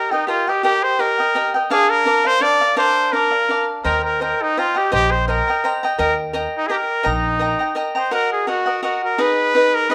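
A bright, up-front solo trumpet with light vibrato carries the melody in a classical style, its plate reverb lending shine to this romantic, proud mariachi excerpt at 169 BPM in a lilting, lightly swung 3/4. A crisp, picked acoustic cavaquinho, also up front and bathed in plate reverb, picks out the accompaniment throughout, while a woody pizzicato upright bass on steel strings joins at 3.8 seconds and drops out at 7.5 seconds. The harmony moves through Eb major before turning to darker minor chords at 8.1 seconds, all captured in a wet small room with a rough home-demo feel.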